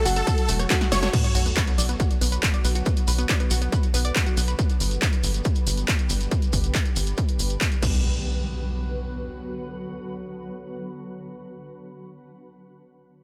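A heavy, overdriven electronic kick and a punchy analog drum machine drive this euphoric uplifting trance excerpt alongside a tight, pumping sequencer bass and a grainy shekere, while a huge detuned supersaw melody, a faint analog pluck and a glassy, crystalline bell flare briefly at the opening before a drum fill and sub drop. Bright, round pluck arpeggios run from the start and stop at 4.6 seconds, and a shimmering, ethereal pad carries on to 11.0 seconds with a second impact.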